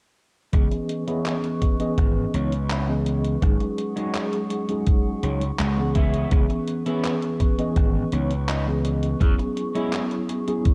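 A thumpy electronic kick drum sits up front at 83 BPM in straight 4/4, joined by a detuned 8-bit drum machine playing handclaps and hi-hat through gated reverb, both carrying a tape-softened, small-room character. This short vaporwave cut from a longer piece feels melancholic and woozy, drifting from G#7sus4 to C#m7 at 6.0 seconds and settling on E6. A gritty, overdriven slap bass punches in up front alongside a mellow tine electric piano, whose clean accompaniment comes through built-in speakers with ensemble chorus and tape echo. A slightly broken-up electric guitar picks a riff through analog chorus, a low-pass filter and tape echo, with a filter sweep running across the clean guitar and a short fill between 5.2 and 6.3 seconds. Further back, a warbling, detuned pad with a slow attack holds sustained chords high in the mix's background, its wave-folded, lo-fi tone bathed in chorus and reverb. 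The whole piece has a cassette-tape sheen with light reverb and digital ambience.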